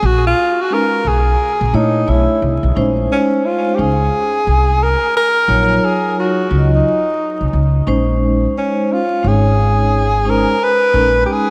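A breathy, subtoned tenor saxophone with delay opens on a smoky solo of scooped, vibrato-laden notes over woody pizzicato upright bass, and soft-malleted vibraphone enters at 0.7 seconds with a ringing, airy shimmer and slow motor vibrato, giving this cool jazz-hop fragment, cut from a longer piece, a dreamy, cathedral-like reverb wash and a dusting of vinyl crackle.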